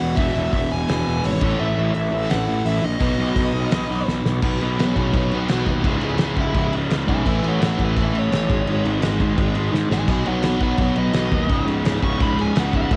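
Raw and angry, this 13-second cut of punk rock in C# minor charges at 170 BPM, opening in half time before a drum fill at 4.1 seconds launches a dark, biting lead guitar solo from 4.4 seconds over chords moving from B5 through C#m, A and G#5. A bright overdriven electric guitar and a sludgy distorted guitar sitting in the background grind out riffs beneath a growly, fuzz-soaked picked bass. The loose indie drum kit, up front with a fat snare, punchy kick and dark cymbals in a pumping room, shares the lead guitar's cassette-tape grit in a dry home recording.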